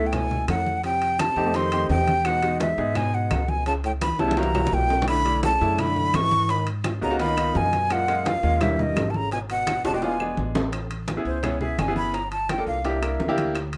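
Sunny and sophisticated, this Afro-Cuban jazz excerpt at 170 BPM in 4/4 puts a breathy, chiffy flute melody with vibrato up front beside a clear, short-sustained baby grand piano, backed by a mellow trombone second line that stops at 10.4 seconds, woody pizzicato upright bass, and background congas, ringing metal-shell timbales, dry claves and very quiet, distant bongos, all under light reverb, with drum fills at 4.2 and 9.8 seconds, the second leading into a flute solo from 10.7 seconds over lush extended jazz chords.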